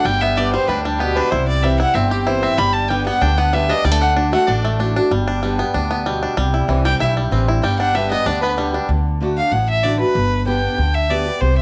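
Bluegrass with a virtuosic, rustic mood, this fragment of a longer piece sets a clear, smooth bowed fiddle melody with light vibrato over a boxy picked archtop guitar, a bright, twangy fingerpicked banjo playing arpeggios, and a thumpy, dark pizzicato upright bass, the fiddle resting briefly until 6.9 seconds and then taking a solo from 8.9 seconds as the banjo drops out, all in a moderate echo-chamber reverb with small-room ambience.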